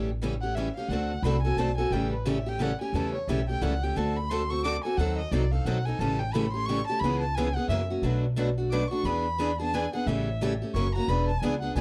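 Two bright, picked parlour steel-string guitars, one up front and one boxy with finger squeak in the background, and a woody, thumpy pizzicato upright bass open this lively, charming excerpt of dry, close, 1970s-style acoustic string swing in 3/4 at 177 BPM in A major, before a dark bowed violin enters at 0.4 s to carry an expressive solo full of vibrato and portamento over chords moving from A7 and D7 through D#dim7, C#m7 and Bm7 to E7.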